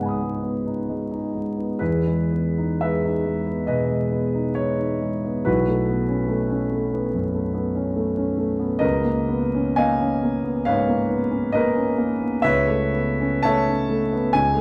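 Impressionist classical solo piano, serene and luminous at a rubato 54-73 BPM, this fragment of a longer piece features an up-front concert grand with deep bass, an open tone and long sustain moving through lush chords from C#9sus4 to Emaj7 and Aadd9/C#, set in a moderate recital-hall reverb captured with close, detailed microphones under a vinyl crackle.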